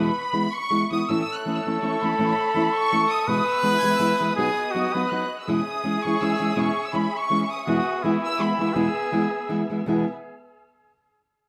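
A smooth, vibrato-rich violin section carries the high melody up front with a touch of tape echo, while a clear classical-style trumpet with a soft attack and light vibrato plays a second line beneath it through the same echo. This is a proud, festive mariachi excerpt in E major at 164 BPM in a swung, rubato 3/4. A full-bodied, fingerpicked nylon-string guitar provides the accompaniment, and from 1.1 seconds a lush, expressive second violin section holds sustained chords in the background, all within a moderate studio reverb.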